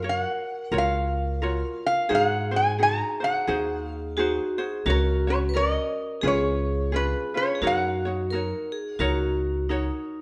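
A nasal, metallic lap resonator guitar carries the slide melody up front with fingerpicks in this dreamy, sunny Hawaiian excerpt, swung gently in 4/4 over a light fingerpicked ukulele, a woody pizzicato upright bass on gut strings, and a bright, dry vibraphone struck with hard mallets and its motor off, all set in a moderate recital hall and moving through F#maj7, G#7, C#7 and F#6 across about 10 seconds of a longer piece.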